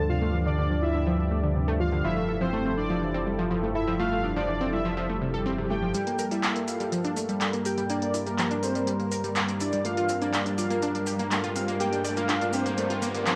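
Recorded at home on cassette and bathed in a wet spring reverb, this short cut from a longer piece of melodic techno in G dorian moves at a driving, hypnotic 123 BPM, with a thick, detuned unison lead carrying the melody over a smooth supersaw second line that is darkened by a low-pass filter and tape echo. A soft-edged analog pad holds sustained chords in the background, a round, bright pluck spins filter-swept arpeggios with chorus and echo, an evolving analog drone hums underneath, and a deep, mellow bass sits up front until 5.9 seconds, just after a very quiet swell and riser begins at 5.2 seconds. At 5.9 seconds an up-front deep house kit with smooth hats and handclaps arrives in a small room, joined by grainy, acoustic maracas in the background, as the build-up moves from Gmadd9 to Bb6 and a filter sweep moves across the lead.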